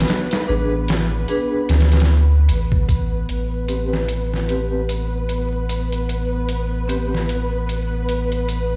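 A muffled, thumpy sampler-style drum kit swings lazily at 75 BPM under a round, deep dub sub bass, while mellow string-machine cellos hold sustained chords in A minor and a ringing, close-miked vibraphone with tape echo and tremolo enters at 0.5 seconds, its filter sweeping from 3.3 seconds as a faint flickering, grainy texture arrives at 4.2 seconds, giving this hypnotic, cinematic trip hop excerpt the feel of a stone room heard through vinyl crackle.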